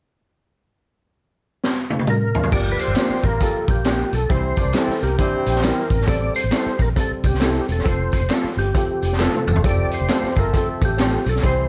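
Urgent and passionate, this short cut from a longer uptempo 1960s-style soul piece swings lightly, as a raw garage drum kit with a boomy kick and high-tuned snare sits up front and plays fills at 1.6 and 9.2 seconds. An overdriven, gritty tonewheel organ carries the melody through chorus vibrato and a slow rotary speaker, over a round, foam-muted electric bass, a woody upright piano and a mellow, distant horn section that plays from 2.5 to 5.9 seconds and returns at 9.6. Slightly broken-up guitar stabs through a small old amp, tambourine, maracas and group handclaps fill in the background of a dark, lightly reverberant production as the chords move from Gm7 through C and Am7 to F.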